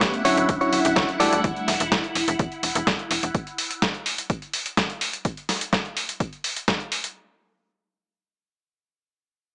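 A bright, twangy clean electric guitar plays a riff in this nostalgic, sensual fragment of filtered disco house and stops at 1.4 seconds, as a mellow tine electric piano with phaser and 12-bit sampler grit drops out by 1.7 seconds, while a swirling string machine holds Dmaj9 and Em11 chords until 3.4 seconds and a snappy, metallic slap-like FM bass with tube saturation sits beneath; all four of these parts are low-pass filtered and sidechain-pumped, over a gritty, overdriven sampler-style kit of hi-hat and snare and a punchy, tape-warm electronic kick, with plate reverb and a small-speaker sound.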